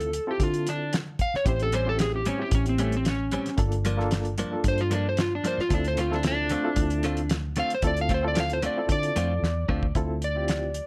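Set in a light reverb, this short cut from a longer piece is a smoky, brooding straight-eighth soul blues in D minor at 113 BPM, in 4/4. An up-front electric slide guitar carries the melody as a solo from the start, its tone dark and slightly broken-up, ranging from A3 to F5. Beneath it, a barky, reedy electric piano with fast tremolo plays accompaniment. A foam-muted vintage fingered bass supplies a round, punchy low end, and a cloth-damped drum kit thuds with a fat snare, tight kick and hi-hat, its top rolled off. A bright, compressed clean electric guitar, recorded direct, adds picked stabs from 1.7 to 9.9 seconds. The chords move from Dm7 through A7#9 and Gm7 back to Dm7, and a drum fill at 9.4 seconds closes the section.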